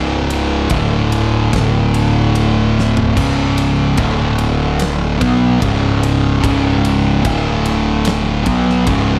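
Stoner and doom metal at a hypnotic, heavy 73 BPM in straight 4/4, this short cut from a longer piece lays two distorted, up-front fuzz guitars, one dark and thick, over an overdriven, growling fingered electric bass, while a big acoustic rock drum kit with a fat snare, tight kick and rolled-off top enters at 0.3 seconds and drops in a fill at 2.8 seconds, all in a dry sound as the riff shifts between C#5 and D5 power chords.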